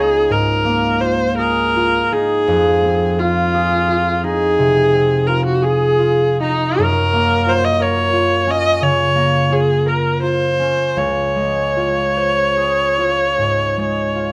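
Impressionist classical music for viola and harp, this short excerpt unfolds in a dreamy, pastoral mood with a flexible, rubato lilt in 12/8. A single bowed viola carries the melody up front, its clear, focused tone shaded with vibrato, while the concert harp plays a bright, fingerpicked accompaniment whose ringing notes span a deep range beneath it. Both instruments sound throughout the 14.3 seconds, captured by close, detailed microphones in a light reverb, as the harmony drifts through lush chords such as Gbmaj7 and Dbmaj7.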